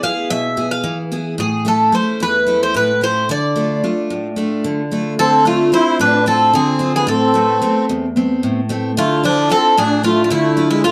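A metallic, double-strung Greek bouzouki carries the melody up front in this moody, brooding Greek folk excerpt, its picked lines partly doubled at the octave over a 7/8 metre. A bright, full-bodied picked steel-string acoustic guitar also sits up front, picking through chords that darken from E and A toward D minor. At 5.2 seconds a reedy, shimmering musette accordion enters with a second line, all set in a small room with a dark production.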